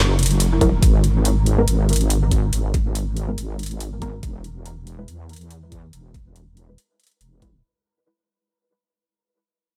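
Deep dubstep with a meditative, heavy mood, moving in a swung half-time feel over F#7, G#madd9 and E chords in this short excerpt cut from a longer piece, fading out throughout. A detuned, resonant sawtooth wobble bass with chorus opens the track at 0.0 seconds and sits up front alongside an overdriven, knocking electronic kick and metallic, overdriven hi-hats, both treated with studio reverb. Muted, evolving filtered dub chord stabs with chorus and dub echo arrive at 0.6 seconds, set within a digital ambience.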